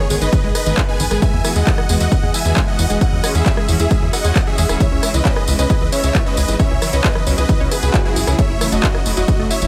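Set in a digital ambience, this euphoric, driving uplifting trance passage, cut from a longer piece, has a polished, produced sound with a punchy kick placed up front. A huge, lush supersaw lead carries the melody over detuned sawtooth layers and a sub octave, with sidechain pumping and tape echo. Behind it, a bright studio string section holds sustained bowed chords with vibrato. A tight sequenced synth plays arpeggios treated with chorus, phaser and tape echo. A saturated, plucky sequencer bass drives the low end. The techno drum kit adds handclaps, smooth hats, rim click and tambourine, recorded with a tape-warm, small-room character. Harmony moves through G#m, Eadd9, C#m and F#m7, and a soft electronic swell sits in the background from 7.7 to 8.4 seconds.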